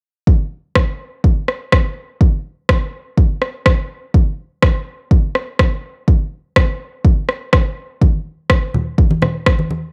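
A straight 4/4 pulse at 124 BPM drives this hypnotic, earthy afro house excerpt. A punchy, layered electronic kick sits up front from 0.3 seconds, re-recorded in a small room with studio reverb and cassette tape character, joined at 0.8 seconds by a tape-warm electronic rim click treated the same way. Low-tuned, thick-skinned congas played with soft hands arrive close and dry at 8.0 seconds, all within a fairly dry home cassette recording.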